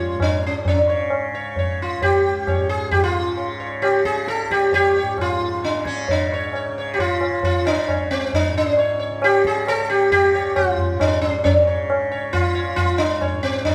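A bright, plectrum-plucked sitar with shimmering sympathetic strings sits up front and carries the melody in this radiant, serene Hindustani classical passage, cut from a longer piece, at 134 BPM in 3/4 and speeding up throughout. Beneath it a softly plucked tanpura holds a warm, buzzing drone, while a low-tuned tabla with a short ring enters at 0.2 s. The trio plays live together in a stone room with wet reverb, and the music moves into a new section at 6.1 s.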